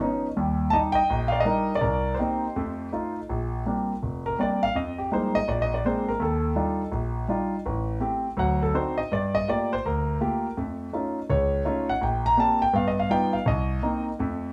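A concert grand piano opens this solo jazz excerpt in Bb major, swinging at 165 BPM with a loose, rubato feel over Ebmaj7, Cm7 and F7 before its solo passage begins at 3.3 s. The piano sits up front with an intimate, natural tone, deep bass reaching down to F1 and the audible noise of its action, while a moderate studio reverb adds gentle space. Rich harmonies such as Bb69, D7b9, Faug7 and Gaug7 give the mood a warm, swinging glow until the cut at 14.5 s.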